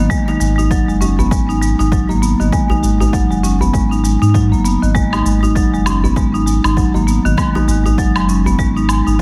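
A woody, bright marimba with medium hard mallets opens this organic downtempo excerpt, its up-front arpeggios carrying a delay over a deep, round sine sub bass with tube saturation and sidechain pumping, all resting on a single G#7 chord that omits the third. A punchy, layered electronic kick with overdrive arrives at 0.1 s alongside a shaker and woodblock re-recorded in a large room, while a tight, cracking djembe played with hard hands sits in the background from 0.3 s until 8.6 s. The mood is meditative and warm, with a swung 16th-note feel, a lush hall reverb and a heavily compressed, radio-like sound.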